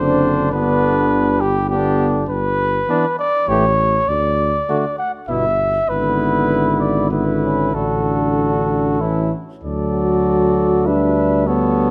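In a rubato 3/4 at 100 BPM, this noble, stately classical brass quintet passage in D major, tuned to A4 = 436 Hz, is cut from a longer piece. An up-front, mellow trumpet carries the melody with light vibrato over a clear flugelhorn second line. A distant, roomy French horn with light vibrato and a close-miked trombone set in the background supply the accompaniment, while a mellow, roomy bass trombone sits up front on the bass. A moderate scoring stage reverb surrounds the ensemble as the harmony moves from D7/F# through Em7/G, A7 and E7/G# toward D/A. A new section begins at 9.6 seconds on D, moving to Em7/D at 10.9 seconds before the passage closes at 11.9 seconds.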